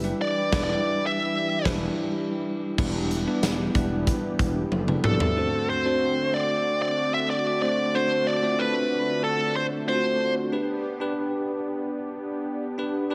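Urgent and dramatic, this 1980s-style pop passage at 93 BPM, cut from a longer piece, puts a bluesy, overdriven lead guitar solo up front over bright, bell-like tine electric piano and a bold, brassy, detuned analog pad with chorus, while a growly fretless bass and a big rock drum kit with punchy kick and gated reverb drive the opening until a drum fill at 4.7 s, after which drums and bass drop out and the guitar carries on over keys and pad until 10.3 s as the chords move from Em7 to D7 to G inside a lush hall reverb.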